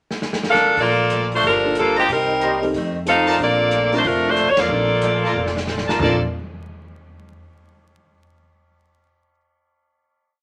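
A bright, up-front saxophone section carries this joyful, brassy big-band swing piece, voicing a motif-based melody in four-part block harmony with vibrato, while a distant, roomy trumpet section punches in with syncopated stabs. Underneath, an airy drum kit keeps time on the hi-hat with dark cymbals and a punchy kick, adding fills in the pickup bar and again from 5.4 seconds. A woody pizzicato upright bass plays in two, a very quiet, boxy archtop guitar strums jazz chord shapes with audible finger squeak, and a mellow baby grand piano enters at 1.6 seconds with rootless, syncopated comping. The whole band hits an accent at 4.5 seconds before landing on a final chord at 6.0 seconds, all set in a wet studio reverb with vinyl crackle.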